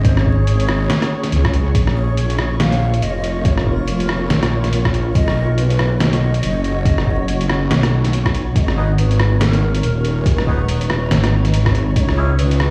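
Deep dubstep at 141 BPM in G# minor, brooding and heavy with a swung half-time feel, where an up-front, saturated wobble bass with chorus and a deep overdriven electronic kick anchor muffled, pitched-down sampler-style hi-hat, rim click and snare, while a breathy ney melody trails dub echo over a cloudy granular pad and a flickering grainy texture, reedy melodica stabs enter at 8.8 seconds, and vinyl crackle and stone room reverb colour the sound.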